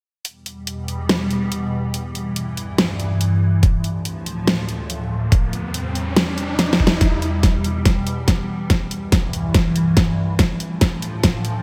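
Chaotic and aggressive, this heavy wobble dubstep cut moves in a swung, half-time 4/4 and is clipped from a longer piece. An evolving wavetable pad holds sustained chords in a low register throughout, its detuned unison tone morphing through sine and triangle shades with ring modulation, slow attacks and long releases, coloured by ensemble chorus, phaser, built-in reverb and sidechain pumping that sits bright and up front. The dubstep drum kit starts almost at once with a huge snare and bright hats, tape-warm and close in a small room, and an electronic kick drum lands at 3.6 seconds with a knocking punch. A riser climbs in from 4.8 to 7.0 seconds, and a drum fill begins at 6.6 seconds and carries on through the second section, which turns into a build-up over the Em, C and Dm progression. Light reverb gives the mix a little space around its forward, layered production.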